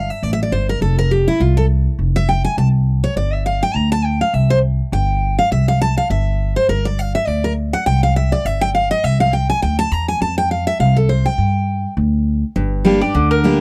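Driving and lonesome, this swung bluegrass cut from a longer piece opens with a bright, full-bodied picked steel-string guitar taking a solo through the first 12.6 seconds over G5, F5 and C chords, with a dark, thumpy gut-string upright bass plucking beneath it, both up front. A shift to a G minor chord at 12.6 seconds ushers in a new section, and at 13.0 seconds a woody, double-strung mandolin enters with a short melodic phrase. The sound is a dry, close 1970s-style studio recording with light reverb.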